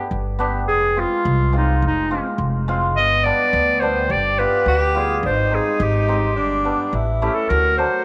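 A clear, classical-style clarinet opens this festive, soulful klezmer passage in a straight 2/4, carrying the melody up front, joined almost at once by a woody pizzicato upright bass and a hammered, shimmering cimbalom ringing beneath. At 3.0 seconds a mellow tenor saxophone with soft attack and vibrato enters on a jazz-style second line, sounding distant and roomy. Moderate plate reverb gives the brief cut a spacious glow as the harmony moves from G through F minor and A-flat toward a closing D at 7.5 seconds.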